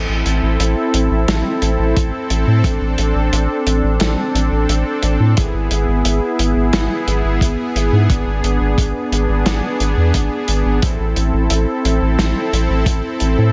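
Nocturnal and nostalgic, this synthwave excerpt moves at 88 BPM in A harmonic minor, with a soft, detuned supersaw holding sustained chords through Am and E/G#, roughened by vintage 12-bit sampler grit and sidechain pumping. A round, deep analog bass sits up front beneath it, while a muffled, lo-fi soul kit brings hi-hat and a medium-tuned snare washed in gated reverb, joined by a tight, dry kick from 2.0 seconds. The mix is dark and rolled-off on top, with a light reverb around the whole.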